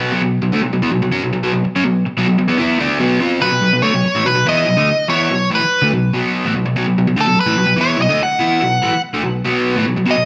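A crunchy, double-tracked electric guitar opens this energetic, swaggering rock excerpt at 0.0 s, playing a picked, overdriven riff in a straight 4/4 feel from its first moment. At 3.4 s a nasal lead guitar joins with a melody, its tone shaped by a parked wah, overdrive and tape echo. Both guitars sit up front. The riff guitar has a warm, gritty weight in the lower register, while the lead cuts through higher up. A moderate large-studio reverb with a digital ambience surrounds the pair until the cut at 10.3 s, where the piece is clipped from a longer performance.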